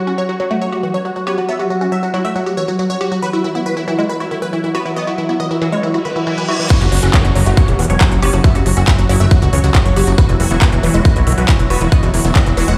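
A straight 4/4 pulse drives this hypnotic, psychedelic trance excerpt, which opens with a bubbling stepped-filter texture holding sustained chords in the background, a woody, wave-folded pluck riff with tape echo, and a punchy supersaw stab melody treated with phaser and echo, each pumping under the sidechain. A metallic, distorted wobble bass slips in at 1.3 s as a second line, bright yet set back in the mix. A reverse cymbal and downlifter sweep in from 6.0 s ahead of the drop at 6.7 s, where an up-front electronic kick, a big-room dance drum kit with crisp hats, crash and handclaps, and a fat, detuned analog bass arrive, the whole mix sitting in a large studio reverb.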